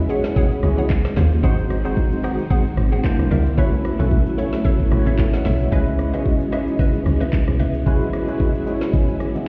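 Soulful and hypnotic, this amapiano excerpt rides a lightly swung groove from a smooth electronic R&B drum kit, with knocking kick, woody snare, metallic hats, handclaps, rim click and shaker up front, joined at 0.4 seconds by bright, close and dry bongos and congas sitting very quietly beneath. A deep, round, dark log drum bass and a barky, clean tine electric piano sit up front in the mix, while a lush vintage string machine holds sustained chords with ensemble chorus and sidechain pumping, and a hollow, bouncy square-wave pluck adds detuned stabs through chorus and digital delay until 7.7 seconds. The chords move through rich extended colours from E69 to C#m9 and back, and the whole sound comes across muffled, as if heard through a wall into a stone room.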